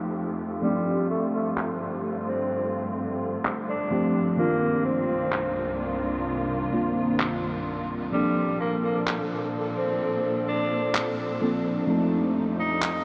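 This woozy, hazy vaporwave fragment opens on a mellow FM electric piano and a muted studio string section sounding together. The round, softly decaying piano is colored by phaser, analog chorus and tape echo, while the veiled, con sordino strings hold lush bowed chords with vibrato. At 0.6 seconds a breathy, raspy tenor saxophone enters with the melody in a vintage pop style, its gritty tone trailed by tape echo, and electronic handclaps join at 1.6 seconds with a tape-warm, sampler-style sound that seems re-recorded in a small room. Set at 64 BPM in a straight 4/4 and in C dorian, the harmony moves from F7 through G9sus4, Cm11 and Bbmaj9 before returning to F7. The dreamy mix is soaked in a huge ambient reverb with cassette-tape character, a low-pass filter and a filter sweep running the whole length of this section cut from a longer piece.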